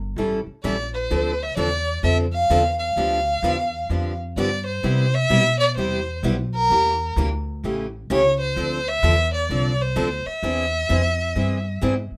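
A moderate studio room gives this short fragment a close, present sound, with all three instruments up front and tuned a touch low to A4 = 435 Hz. It is bittersweet, swinging jazz manouche at 129 BPM in 4/4, with a lilting swung eighth-note feel. The upright bass, plucked on gut strings, has a woody, thumpy tone and carries the low end from 0.0 seconds. The picked steel-string acoustic guitar adds a bright accompaniment. The bowed solo violin holds the melody with vibrato, a soft attack and expressive portamento. The harmony moves through a progression that opens on A7b9, passes through Dm7, G7 and Cmaj7, and closes on E7alt at 10.4 seconds.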